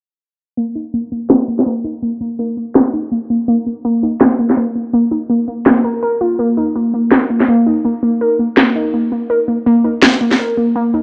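Tense and cinematic, this half-time drum and bass excerpt at 165 BPM with a swung 16th feel opens at 0.6 s on an up-front, warbly, dusty synth pluck, detuned with a lo-fi noise layer, playing arpeggios between Bb3 and Bb4 through chorus, phaser and tape echo, joined at 1.3 s by a layered electronic snare with a cracking bite, re-recorded in a small room and placed up front, while filter sweeps move across both parts in a gritty hardware recording bathed in moderate echo chamber reverb.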